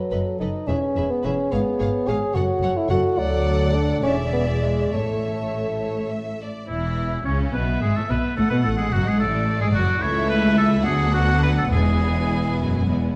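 Swaying in a flexible 6/8 at 66-74 dotted-quarter beats, this quick, graceful and lively classical-period movement in A major opens with a mellow, up-front solo bassoon and mellow sustained horn chords beneath rich, vibrato-laden violins carrying the melody and a second line, with violas in the background, smooth cellos, and dark, expressive double basses gliding with portamento. At 6.7 s the bassoon and horns have dropped out, and a clear, vintage-toned solo oboe takes up a second line. Round soft-mallet timpani touch in at 11.7 s over an E chord, all set in a moderate recital-hall reverb with a dark production.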